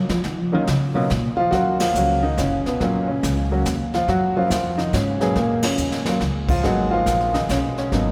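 Bathed in a wet cathedral reverb from a church or concert hall, this moody, cool jazz piano trio swings in 3/4 in a brief cut from a longer piece. A growly, pizzicato upright bass with steel strings takes a short solo at the start while a smooth, vintage upright piano sits up front carrying the melody with long sustain. A brush kit with a boomy kick fills out the band, joining on ensemble accents at 1.7 and 5.6 seconds and playing a fill from 5.8 to 6.2 seconds.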